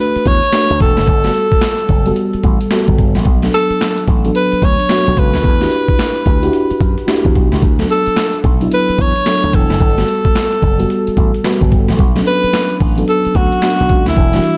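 Swung sixteenths at 110 BPM drive this flirty, bouncy new jack swing excerpt, where a gritty, overdriven boom bap drum kit with a thumpy kick, high-tuned snare, handclaps and hi-hat sits up front beside a punchy slap bass through an envelope filter, while a dreamy, warbling FM electric piano with a soft pad layer and chorus cycles through D6, Gmaj9, Bm7 and Em9 beneath a breathy, whispered alto saxophone melody with light vibrato, all in a dark, dry production.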